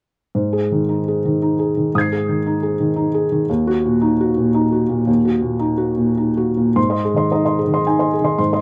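Recorded outdoors with light reverb, this short fragment of hopeful, intimate neoclassical minimalist piano features a solo felt-muted upright piano, soft, mellow and up front, playing rubato in 3/4 at around 101-118 BPM across a span from Eb2 to C7, moving from Ab to Ebm and returning to Ab as a new section begins at 6.8 s before it ends at 8.6 s.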